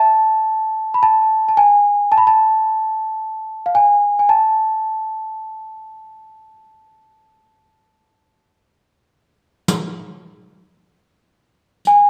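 A bell-like, delicate celesta carries the melody from the start, its sweet, full tone sitting close and up front in a high register spanning a slightly raised F to B. At 9.7 s a riq joins with bright jingles under soft hands, lending this festive, stately Arabic maqam passage a quieter percussive lift. The whole excerpt is set in a recital hall ambience and breaks off at 12.1 s, cut from a longer piece.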